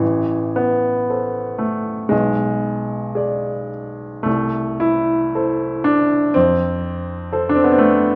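A clear, polished baby grand piano sits up front and plays alone, spanning A1 to D5 in this short passage from a longer romantic nocturne. The slow 4/4 pulse bends with rubato as the harmony moves from Am to Bm6, then Am/C and F, in a tender, serene mood. A moderate scoring-stage reverb with a 1.6-second decay surrounds the present piano tone with a gentle sense of space.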